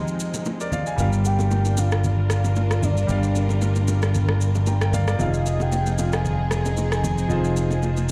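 A dark, round fingered electric bass sits up front in this soulful, hypnotic amapiano excerpt, entering at 1.0 seconds with a punchy, amped tone low in its register. The piece moves at 114 BPM in 4/4 with a 55% swing on the sixteenths, in G phrygian, and its chords shift from Fm7 to Gm7 and back to Fm7. A brilliant concert grand piano carries the accompaniment from the start, polished and present with long sustain, deep lows and audible action noise. A bowed studio string section holds sustained chords beneath it, played sul tasto with a soft attack and vibrato for a close, intimate ensemble sound. Layered electronic shaker and rim click drive the groove alongside acoustic bongos and congas set in the background. Joining the bass at 1.0 seconds, a full-bodied, octave-layered synth lead sings the melody with a sine and triangle blend, a sub octave and vibrato, coloured by chorus, phaser and digital delay. 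The whole mix sounds as if it is played through a big sound system in a bare room, with large studio reverb and small room ambience.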